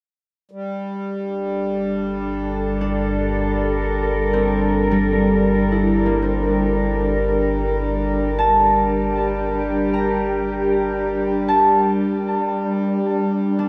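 In a straight 4/4 at 77 BPM, this spacious, melancholic ambient excerpt in G dorian opens on a reedy pedal harmonium drone at 0.5 s, joined by an up-front glassy FM pad with ensemble chorus holding sustained chords, a deep, ominous rumbling bass drone, and, from 2.8 s, fingerpicked, ringing concert harp arpeggios trailing diffuse ambient delay, all bathed in a lush hall reverb as the Gm harmony shifts to D7(no3)/G at 12.9 s.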